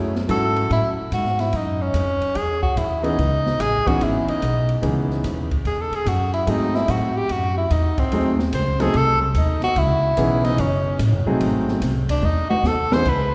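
A long, wet concert-hall reverb surrounds this short cut from a longer small-group swing and bop piece, giving it a cool, swinging mood with a lilting swung feel. A present, up-front tenor saxophone takes the solo from start to finish, its tone clear and in a jazz style. An intimate grand piano with a natural sound and audible action noise accompanies, while a woody, thumpy pizzicato upright bass with steel strings sits up front beneath it. The open acoustic drum kit adds ride, hi-hat, crash, a high-tuned snare, a boomy kick and toms, ending with a drum fill from 12.2 to 13.1 seconds. The harmony moves through F#m7, C#m7 and G#7b9 before cycling back through the same chords.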